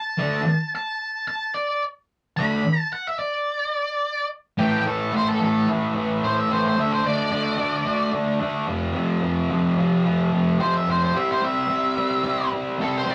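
A dark, octave-fuzzed lead guitar opens this swaggering, raw rock cut with a solo over its first 4.6 seconds, sitting up front. From 0.2 seconds a thick, bright, double-tracked fuzz guitar drives a low riff in a straight 4/4 beneath it, as the chords move from D5 through A5, D5 and F5 to C. The playing has the rough, slightly wet feel of a small rehearsal room.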